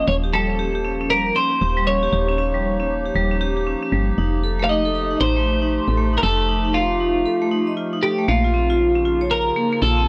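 Intricate and eerie, this swung IDM excerpt sets a bright, twangy twelve-string electric guitar melody with analog delay up front over a warbling, nostalgic tape-like pad with chorus, ringing hard-mallet vibraphone arpeggios carried by tape echo, and a woody, round FM bass, moving from Eb7 to F7 and reaching Bbm at 8.3 seconds in a dry, gritty cassette-tape sound.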